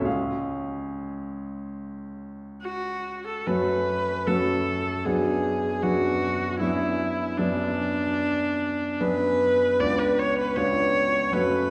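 Elegiac and melancholic, this romantic classical duo unfolds with a flexible rubato feel, the grand piano opening alone with a natural, clear accompaniment before the bowed viola enters at 2.6 s with a focused, vibrato-rich melody. Both instruments sit up front, yet a reverberant recital hall surrounds them, lending the sense of a listener seated further back in the room. Harmonies shift through dark minor and diminished colours toward an unresolved dominant chord near 9.8 s, and the passage is cut from a longer piece.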